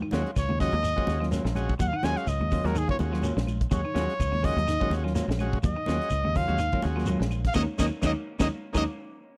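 Afrobeat with an intense, defiant mood, this short section from a longer piece rides a swung sixteenth-note groove over a single Ebm9 chord. A bright, punchy trumpet with vibrato takes the solo up front from 0.4 seconds, while a fingered electric bass, foam-muted and direct, sits prominently beneath it alongside a tight funk drum kit with a high-tuned snare, tight kick and hi-hat in a small, natural room. Two guitars with spring reverb sit in the background: one at the edge of break-up plays twangy, scooped picked arpeggios, and a dark, clean semi-hollow guitar adds fingered stabs. A vintage combo organ with light vibrato fills in buzzy accompaniment, and the percussion layers a grainy shekere, woody, saturated claves and very quiet, soft-handed congas. The band lands an accent from 7.6 seconds under the trumpet, all captured in a dry, close 1970s-style studio sound.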